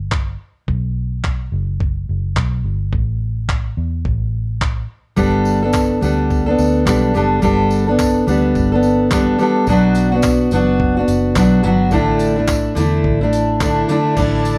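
A fingerpicked steel-string acoustic guitar takes the spotlight from 5.2 seconds, its full-bodied jumbo tone and fresh strings sitting up front in this sunny, carefree acoustic pop piece at 107 BPM with a swung sixteenth-note feel. From the outset, a round, foam-muted vintage electric bass and a gritty, compressed soul drum kit set the groove, the kit built from a thumpy kick, handclaps, tambourine and crash cymbal. A jingly, bright tambourine joins in the background alongside the guitar. The harmony moves from B5 and A5 into Gadd9, Bm and Asus4. At 14.2 seconds a lush, bowed string section with expressive vibrato and a smooth top slips in behind with warm sustained chords, just as this excerpt from a longer piece cuts off. The mix leans dark, with a moderate studio reverb.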